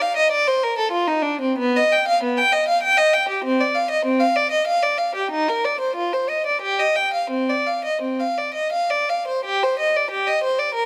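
A classical, baroque-style suite movement for unaccompanied violin in C minor, this short excerpt moves in a flowing yet grave 3/4 at roughly 80-99 BPM, with a rubato feel that lets the line breathe. A single bowed violin plays alone throughout the 10.9 seconds, its rich, smooth tone carried by vibrato and an even delivery across a range from B3 to G5. Close, detailed miking places the player up front, with a light reverb adding a touch of space around the sound.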